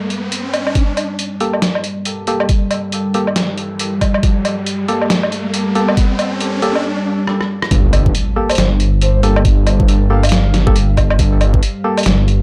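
A swung, half-time deep dubstep groove at 138 BPM in G minor drives this dark, heavy excerpt, built on an overdriven, knocking electronic kick and a gritty, pitched-down trip hop sampler-style kit of hi-hat, rim click, snare and woodblock, with a riser building from the start and breaking just before a drum fill. A moody ambient pad holds a Gmadd9 chord with chorus and built-in reverb, while hollow, percussive organ stabs pass through cassette tape and dub echo. At 7.7 seconds the drop lands on an impact and a rumbling, detuned saw bass, and at 8.5 seconds a breathy, flute-like lead sits in the background with dub echo, all in a dry, hardware-recorded sound.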